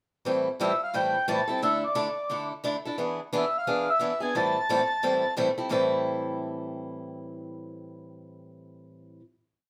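A reedy, airy accordion carries a motif-based melody of song-like phrases from 0.6 to 5.3 seconds in this brief, fiery and virtuosic swing jazz piece in A minor at 176 BPM, tuned slightly low to A4 = 438 Hz. Beneath it, an up-front picked steel-string parlour guitar with woody, boxy old strings plays four-to-the-bar rhythm, short and accented on two and four, through a quick Am7, Dsus2, E7 progression that lands back on Am7. The guitar rings on alone into a final chord at 5.7 seconds, all set in a moderate studio reverb.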